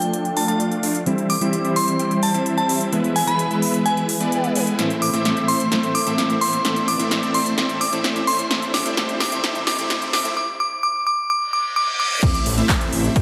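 Euphoric and emotional, this excerpt of festival progressive house in A minor runs at 129 BPM in a straight 4/4 and is built almost entirely as a build-up. A glassy, crystalline synth bell carries the melody with chorus and delay, over huge, airy supersaw chords whose riff is shaped by a filter sweep, while a lush, warbling unison pad holds sustained chords in the background and a dark, clean electric guitar adds fingered accompaniment with tremolo, stopping at 10.4 seconds. The pumping pulse of sidechain runs through the guitar, pad and supersaws, and a big-room drum kit with a punchy snare, crisp hats, handclaps and crash sits up front with overdrive, working through a fill between 4.8 and 10.4 seconds. Very quiet riser, reverse cymbal and impact effects thread through the passage, the chords moving from Dm through C, E and Am before dropping out entirely. At 12.2 seconds the bell ends, the impact lands on Am, and an overdriven, punchy electronic kick arrives, joined briefly by a thick, saturated detuned saw bass on A1. 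A moderate digital hall reverb gives the whole a lush sense of space.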